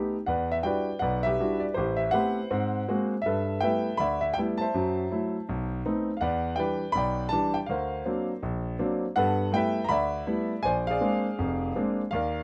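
Swinging at 162 BPM in 4/4 with a 65% lilt on the eighths, this relaxed solo jazz passage in G major, cut from a longer piece, puts a concert grand piano up front, its smooth, vintage tone reaching down into a deep bass as it moves through rich harmonies such as Em9, Ab9, G69 and D7alt, with a new section arriving at 6.2 seconds and light reverb lending the room a gentle glow.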